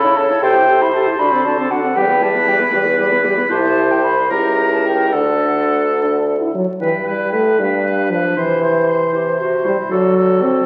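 Heard first through the crackle of a very old 78 rpm record, a cheerful, lively classical-period wind quintet movement in G major and a rubato 6/8 at 78 BPM sets an airy flute melody over a clear oboe second line with light vibrato, while a mellow clarinet and an up-front French horn fill in the accompaniment above the bassoon bass, all carried by a recital hall's wet reverb as the harmony moves from Am7/C through a C#dim7 to G at 6.8 seconds in this short cut from a longer piece.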